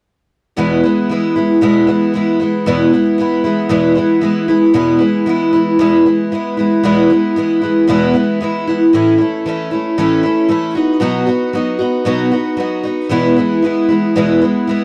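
A jangly rock excerpt at 115 BPM in E major features a single picked twelve-string acoustic guitar up front, its shimmering, octave-doubled tone carrying audible finger squeak as it moves from E to A at 8.9 seconds, then to B and back to E at 13.1 seconds, all set in light reverb within a dark, warm production.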